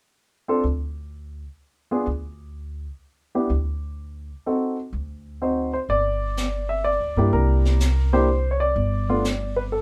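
A snug small-room ambience frames this short cut from a sophisticated, swinging jazz piano trio in three-four time. A warm, up-front baby grand carries the melody over woody, growly pizzicato upright bass from about 0.5 seconds, the harmony unstated until 5.9 seconds, when it settles on G5 and moves through C9 toward Gsus2. At that point a distant, roomy brush kit enters low in the mix with a high-tuned snare and hi-hat, its top end rolled off.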